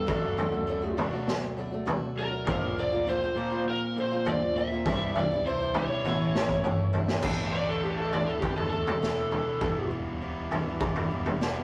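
Quiet-loud alternative rock at 101 BPM in 4/4, bittersweet and restless, this piece is cut from a longer work: it sits in half time until a drum fill at 6.0 s leads into a lead guitar solo at 7.2 s. An overdriven lead guitar through a small cranked amp sings up front over an old ladder-braced acoustic guitar picking boxy, woody arpeggios, while a bright stack guitar riff with overdrive and spring reverb and a growly, punchy fuzz bass sit in the background. A gritty raw garage drum kit with a boomy kick rings forward in a stone room, and the rough rehearsal-room recording has a tube-saturated edge as the chords move from D/F# through Bbadd9 and Cadd9 to Asus4 and Em.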